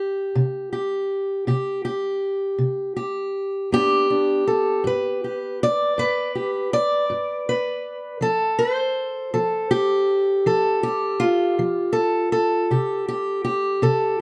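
Laid-back and gritty, this short excerpt of acoustic country blues rolls along at 54 BPM in a straight 12/8. A lone fingerpicked steel-string parlour guitar sits up front with a warm, boxy character, moving from C5 to G and then into a chordless passage at 8.2 seconds before returning to C5 at 12.7 seconds. Close, detailed microphones and light reverb keep the sound intimate.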